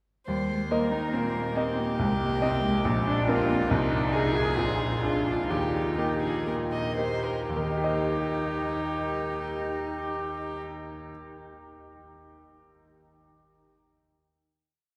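A straight 4/4 pulse at 116-142 BPM drives this spirited, cheerful classical-period movement for piano trio in Eb major, with the theme slowing from 2.8 s until the final chord arrives at 7.5 s. The bright concert grand piano lays down deep bass and brilliant chords on the beats. The rich, pure violin floats a bowed sul tasto melody up front with a soft attack, answering at phrase ends and holding sustained chords, while the cello adds an intimate second line with light vibrato and an airy bow, all within a cathedral reverb in a church-like space.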